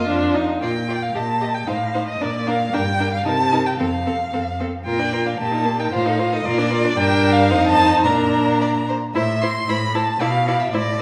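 A first violin with vibrato and portamento carries an expressive melody in this restless, stormy quick classical-period string quartet movement in Bb major at 113 BPM in 2/4, over an even second violin line, a focused viola accompaniment and a smooth, up-front cello bass, all bowed by single players in a wet concert hall with a 1.7 s reverb, the harmony moving from Bb, Eb and F7 toward Am and E5/B near 9.1 seconds in this short excerpt from a longer piece.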